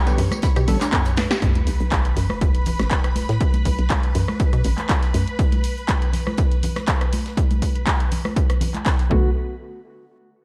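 A swung 121 BPM deep house groove in 4/4 rides on a punchy electronic kick up front, a punchy analog drum machine with handclaps, hats, rim click, snare and tambourine, bright congas tucked in the background, and a very quiet, dry 70s kit, while a hollow, bouncy FM bass pumps against the kick until 5.2 seconds and briefly returns near the end. Over a G chord, a shimmering vintage string machine holds sustained violin texture with ensemble chorus throughout, joined at the opening by a very quiet, moody ambient pad, a woody mallet-like pluck playing arpeggios with tape echo, and organ-like percussive stabs colored by phaser. A drum fill at 1.2 seconds and a band accent at 1.3 seconds give way to a very quiet sub drop impact at 1.4 seconds, and the warm, deep mood carries on in a digital ambience through this excerpt of a longer piece.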